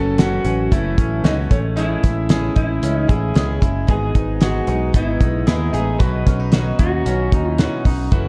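A thuddy, cloth-damped drum kit with a fat snare and tight kick sits up front in this nostalgic, breezy jangly indie pop clip at 114 BPM, alongside a round, punchy picked electric bass, a picked steel-string acoustic guitar with audible finger squeak, a bright, twangy clean electric guitar playing arpeggios through lush chorus, and a dark, slightly broken-up lo-fi electric guitar carrying the melody with spring reverb over F#m7, Amaj7, Emaj7/G# and Badd9 in a warm, shadowy production.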